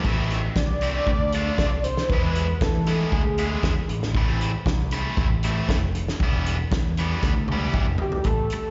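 Heard as a live gig through the venue's PA, with recital-hall reverb and a muffled top end, this short indie rock excerpt in A minor moves at a straight 117 BPM with a bittersweet, restless mood. A bright, double-tracked overdriven guitar riff with slapback echo rides over a growling, overdriven picked bass and a loose acoustic kit with a pumping room sound, dark cymbals, a fat snare and a punchy kick sitting up front. A detuned analog synth lead, mellow and sustained with phaser, vibrato and analog delay, sings from 0.6 s to 3.9 s over Am, Dm and E chords, returning briefly at 8.0 s near the close of a drum fill that begins at 7.2 s.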